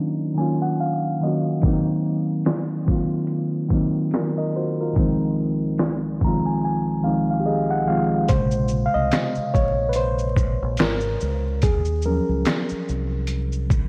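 A reedy electric piano opens this hazy, reflective lo-fi hip hop excerpt in Bb minor, heard alone at first through its built-in speakers with cassette tape and low-pass coloring, while a filter sweep runs across the opening 8.3 seconds over chords moving from Ebm9 to Cm7b5 and Fm7/C. At 1.6 seconds a sampler-style trip hop drum kit enters with hi-hat, kick, shaker and snare, sounding compressed, pitched down and muffled, with a thumpy kick, a medium-tuned snare and an overdriven edge sitting up front. The tempo is a relaxed 72 BPM in 4/4 with a lazy swing on the sixteenths. At 8.3 seconds the piano takes a solo as a dark, round fingered electric bass joins, direct and amped, while the harmony shifts to Bbm9 and back to Ebm9. A very quiet, close finger snap with a short room sound adds a human touch in the later stretch. The whole mix carries worn, warbling old tape character with vinyl crackle, pitch drift and a light digital ambience, and it is cut from a longer piece.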